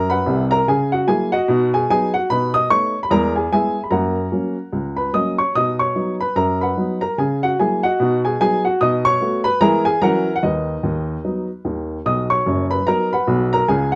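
A woody upright piano opens this short stretch of stride jazz on its own and carries it to the end at 14.0 seconds, sitting up front in the mix. The mood is playful and swinging, moving at 148 BPM in 4/4 with a 60% swing on the eighth notes, and the piano reaches from deep bass notes up into the high treble. In B major, the harmony circles through B, B7, E and F# with passing F#7 shapes over C# and E, and a B over D# leading back home to B. A repeated section begins at 12.1 seconds, and the clip ends shortly after, since it is cut from a longer piece. The production is dark and warm, with a moderate studio reverb that lends a modest sense of room.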